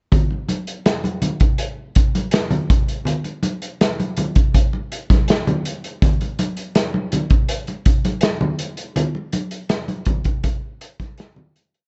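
A straight 4/4 soul groove at 81 BPM sets a smooth, silky mood, carried by a vintage acoustic drum kit whose punchy kick, medium-tuned snare and hi-hat sit up front in a small, pumping room with a rolled-off top. Ringing, medium-tuned congas, played with hard hands and slightly lower in the mix, add a syncopated pattern with a band-limited, vintage tone. The dark production carries little reverb, and the whole short piece fades out from 9.0 seconds to its close at 11.9 seconds.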